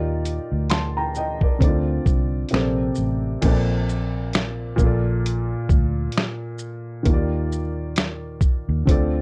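A dark, lightly reverberant production gives this short lo-fi hip hop excerpt a mellow, dreamy haze. An upright piano, woody and smooth with a vintage character and a low-pass filter softening its top, sits up front carrying the chords from Ebmaj7 through Dm7 and Bbmaj9 before settling on Bbmaj7 at 3.4 seconds. Beneath it, a foam-muted fingered electric bass offers a round, amped tone in a low register. The sampler-style drum kit enters at 0.3 seconds, compressed and pitched down, its thumpy kick, medium-tuned snare, hi-hat, shaker, finger snaps and crash cymbal muffled, tape-warm and placed forward in the mix. The groove rides on swung sixteenths, and the harmony returns to Ebmaj7 at 7.1 seconds.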